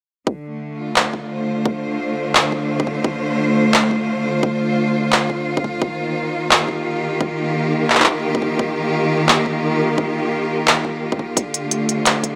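Half-time drum and bass at 173 BPM in D phrygian, this tense, heavy cut swings its sixteenths and moves from Dm7 to Ebadd9 at 5.8 seconds before returning to Dm7. A bright, intense studio cello section sustains bowed chords with vibrato between D3 and C5, pumping under sidechain alongside a hard-clipped, high-passed electronic kick. At 1.0 seconds a produced drum kit joins with crisp hi-hats and handclaps, tape-warm from re-recording in a small room, and the up-front mix sits in a wet echo chamber with a 2.1-second decay.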